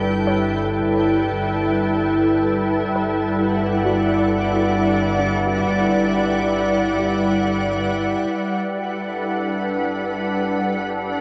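A bright, organ-like pad with ensemble chorus opens this weightless ambient fragment at 67 BPM in 3/4, holding sustained G69 and Em7/G chords as a very quiet, dark, round pluck arpeggiates alongside it and a clear, bowed chamber double bass section with tube saturation anchors a low G, until a barely audible, nasal analog drone enters at 8.3 s, all steeped in a huge reverb and the warbling pitch drift of worn cassette tape.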